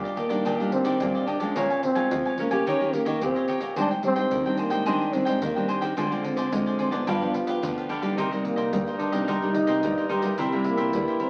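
Sunny and joyful, this short cut from a longer samba and choro piece moves at 109 BPM in Eb major, led by a breathy, mellow trombone with light vibrato and scooped notes, sitting intimately up front. Crisp, bright cavaquinho and two fingerpicked nylon-string guitars, one sitting in the background and one up front with fresh strings and finger squeak, with one of the pair carrying the bass, play over soft-handed tube shaker, pandeiro and tight surdo, while a clarinet with a soft attack adds a second line from 8.2 seconds. Wet studio reverb and the crackle of a very old 78 rpm record give the whole a vintage glow.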